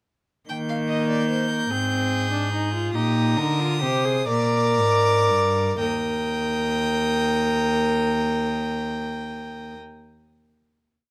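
An up-front cello with a rich, gut-string tone and light vibrato anchors this short, joyful and elegant baroque-style fugue for string quartet in Eb major and 6/8, where a reedy first violin carries the high melody, a close second violin weaves its own imitative line and a warm viola with a smooth top fills the accompaniment, all bowed in period style at 37-50 BPM in dotted quarters and slowing down from 0.5 to 7.4 seconds, as a brief exposition gives way to a final Eb chord held from 5.8 to 9.0 seconds under light reverb and close, detailed microphones.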